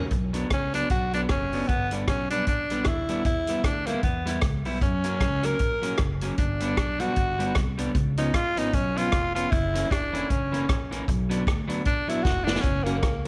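A raspy, gritty tenor saxophone solos up front with light vibrato and scooped notes over a driving, energetic swung ska groove, carried by a punchy vintage drum kit that adds a fill at 12.3 seconds, a woody pizzicato upright bass and a dark, slightly broken-up picked electric guitar, while a piping tonewheel organ on slow rotary speaker stabs in the background at the very start and again at 12.9 seconds, the whole bathed in a moderate echo chamber reverb.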